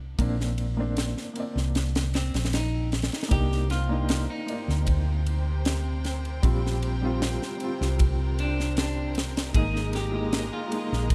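A dark, round hollow-body electric bass sits up front in this smoky, cinematic trip hop fragment in C minor at 77 BPM, alongside a punchy fusion drum kit with a high-tuned snare playing kick, snare and ride, a soft felt-muted upright piano with audible action noise, tremolo, 12-bit sampler grit and tape echo, a clean picked electric guitar melody from 2.1 s carrying the same grit and echo, and bowed studio strings holding smooth, vibrato-rich chords from 3.3 s, set in a small room with the rough, lossy character of a home demo.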